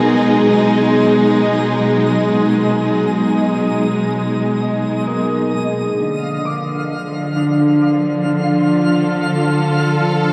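Ambient music with a warm, peaceful mood, this short excerpt cut from a longer piece sets a lush, woody string section up front, its bowed, vibrato-rich sustained chords moving from B6 to Dm at 6.0 seconds. A mellow, ringing concert harp plays fingerpicked arpeggios through tape echo as it fades in, while a twinkling granular texture with an octave-up shimmer, soft attack and long release fades in quietly beneath. Everything sits in a spacious concert hall reverb, coloured by the worn, warbling pitch drift of old cassette tape.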